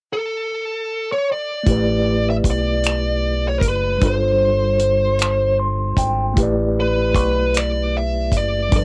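A dark, compressed fuzz lead guitar carries the melody from the opening moment of this slow, sensual six-eight R&B cut at 51 BPM, its picked, distorted tone sitting up front with a cassette-tape grain, tuned to A4 = 445 Hz. A mellow tine electric piano enters at 1.6 seconds, and at 1.7 seconds a round, punchy fingered dub bass and a dry, tight 70s drum kit with finger snaps, hi-hat and kick join over A9sus4 and G9sus4 chords, the piano adding a clean fill at 5.2 seconds. Light reverb and a homemade cassette sound give the whole piece a warm, intimate character.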